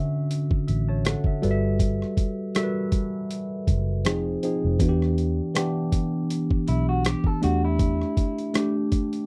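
A dry, close 1970s-style studio sound frames this smooth, sensual R&B and neo-soul excerpt at 80 BPM with a light sixteenth-note swing, where a worn, slightly out-of-tune tine electric piano with phaser carries the Dmaj9, Gmaj13, Fm7, Em7 and A7sus4/E changes over a gritty, tape-warm boom bap sampler-style kit with thumpy kick, hi-hat and rim click, while a dark, round, foam-muted fingered bass sits up front and a lo-fi, slightly broken-up picked electric guitar through a small old amp adds a brief second line from 6.7 seconds.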